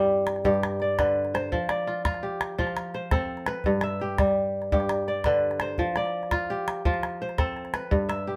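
Rolling in 12/8 at 113 BPM, this short excerpt of joyful West African traditional music moves between G and F chords across its 8.4 seconds. A fingerpicked kora sits up front, its ringing, crisp arpeggios spanning G2 to E5 with a warm acoustic tone. A small calabash keeps the percussion close and dry beneath it, in a live room with light reverb.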